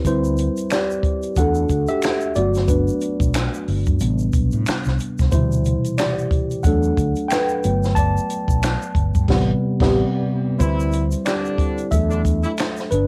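R&B with a neo-soul lean, this introspective, sultry excerpt moves at 91 BPM with a swung sixteenth feel, as a worn, slightly out-of-tune tine electric piano with lush chorus and cassette grit carries a solo over D13sus4, E9sus4, Gmaj9 and Am9 chords, backed by a dry compact cocktail kit with dark cymbals, a high-tuned snare and punchy kick, a round, amped fretless bass, a faint egg shaker with finger snaps and handclaps, a band accent and brief break before 10.6 s, and tight, lightly vibratoed jazz horn stabs from 10.6 to 12.5 s, all in a modest room on a home cassette recording.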